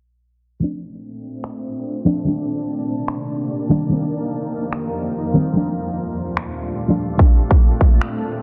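A lush hall reverb and a dense, heavily limited master with a low-pass filter frame this bright, playful future bass fragment in Bb major at 146 BPM, felt in half-time with a light swing. A soft, round, dark pluck with subtle chorus, sidechain pumping and dub echo opens at 0.6 seconds, joined at 1.0 seconds by a shimmering, ethereal pad with granular texture and an octave-up sheen, both under filter sweeps over chords moving from Bbmaj9 through Cm9, F7sus4 and Ebmaj9#11 back to Bbmaj9. Overdriven, layered electronic finger snaps sit up front, and a punchy, overdriven electronic kick drum lands only at 7.2 seconds.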